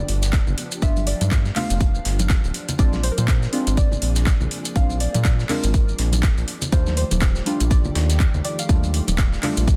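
A swung sixteenth-note groove drives this smooth, deep house excerpt, anchored by a punchy, tape-warm electronic kick that sits up front from 0.3 seconds, with a touch of small-room ambience. Around it, a layered house kit adds overdriven handclaps and metallic hi-hats, a very quiet, gritty sampler-style breakbeat kit tucks hi-hat and snare underneath, and close, grainy maracas join alongside bright, thin-skinned congas played with hard hands in the background. The round analog bass is dark and sustained with a fast attack, pumping against the kick as it holds the low end up front. Over the chords G7, Bb7 and Ebmaj9#11, a soft string machine spreads silky, slow-attack pads through phaser and ensemble chorus, while a deep, detuned chord stab decays in the background with chorus and digital delay. On top, a gentle, round pluck with a filtered, wave-folded edge carries the melody through subtle chorus and delay, all inside a dense, heavily limited mix with little reverb.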